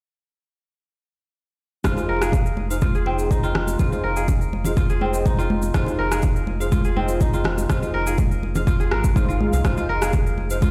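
Hypnotic and driving, this afro house passage, cut from a longer piece, settles into a steady Fm7 groove from 1.8 s. A ringing, crisp fingerpicked kora plays arpeggios through low-pass filtering and digital delay, while dark, detuned synth brass stabs add chorus and vibrato, and a round sine sub bass anchors the low end; all three pump against the beat. A deep, tape-toned electronic kick leads the drums, with a background rim click, damped bright congas and grainy cabasa filling out the percussion, all sounding as if played back through a big system in a bare stone room.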